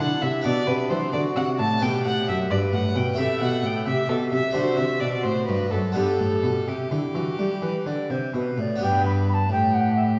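Flowing and radiant, this baroque-style sonata movement in G major moves in a lilting 12/8 at 86 beats per minute, its uneven beats and rubato giving the pulse a natural, breathing give. A mellow tenor recorder carries the melody with a pure, wooden straight tone, its tongued notes marked by a soft chiff, while a single violin traces a second line with a gut-string, period-style sound and light vibrato. A Flemish-style harpsichord fills in the accompaniment, sounding close, dry and full with two sets of strings, and a bowed cello anchors the bass with a rich, reedy tone, sitting slightly louder than the other parts. The harmony passes from Bm through G, Am7 and D7 before settling back on G at 6.0 seconds, and a new section begins at 8.8 seconds, shortly before the recorder finishes at 10.0 seconds. The ensemble is heard from further back in a scoring stage with a generous reverb of about 2.1 seconds, lending the cut-down passage a spacious, glowing bloom.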